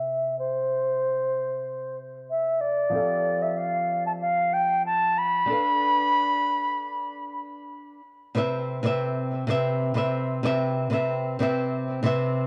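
A reedy silver concert flute and a fingerpicked flamenco guitar open this sunny, blissful chillout excerpt together, both placed up front in a gently swung 4/4. The flute carries the melody with an airy, straight tone and tongued notes, its rolled-off highs softened further by cassette tape and analog delay. Beneath it, the warm acoustic guitar supplies accompaniment in a flamenco style across its broad register, coloured by cassette tape and tape echo. A filter sweep runs through the opening passage as the harmony moves from C to Fadd9 to a rootless G9. The flute bows out at 7.4 s, leaving the guitar alone to settle onto Cmaj7 in a second section from 8.0 s until the cut. The whole home cassette recording sits in a moderate spring reverb with a low-pass filter and a tuning of A4 = 437 Hz, giving it a hazy, homespun glow.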